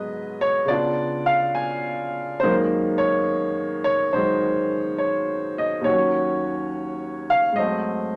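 A woody, up-front upright piano plays solo jazz with a swung lilt, its long, natural sustain ringing in a moderate studio reverb as it moves playfully from Abm7 through Db7b9 and Gb69 to Ebm7 and Ab7b9 across this warm 8.2-second fragment of a longer piece.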